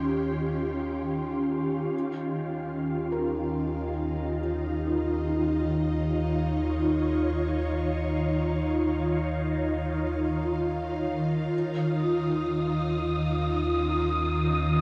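Ambient music, warm and luminous, cut from a longer piece: an ethereal, full-bodied pad with ensemble chorus and phaser sits up front, holding sustained chords that move from Eb13 to Dbadd9/Eb and back, while a deep, round sub bass fades in beneath. A very quiet felt-muted upright piano plays soft, intimate arpeggios until 11.5 s, and at 12.0 s a breathy, wind-like tuned noise texture enters high above. The recording is bathed in a huge, dark reverb with a warm production feel.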